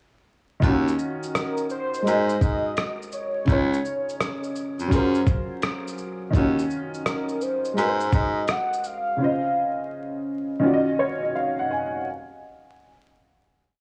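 Lo-fi hip hop in Eb dorian, this short, hazy and nostalgic piece moves at 84 BPM in 4/4 with a 16th-note swing, running through chords such as Ebm7, Gbmaj9#11 and Dbmaj7. From 0.6 seconds a worn, woody upright piano, slightly detuned and colored by cassette tape, holds spread-voiced chords with short sustain, adding grace notes and short fills. Alongside it, a clear, up-front baritone saxophone plays a sparse, jazz-style bass line with vibrato and a soft attack, while a dusty sampler-style drum kit lays down a soft, compressed, gritty beat built on a thumpy kick, hi-hat, rim click and shaker sixteenths. At 1.4 seconds a velvety synth lead of detuned sawtooth and triangle tones enters with sustained, motif-based song phrases, shaded by vibrato, chorus and analog delay. The piano closes the piece alone with a fill from 10.6 seconds, and the whole recording sits in a moderate spring reverb with a bed of vinyl crackle.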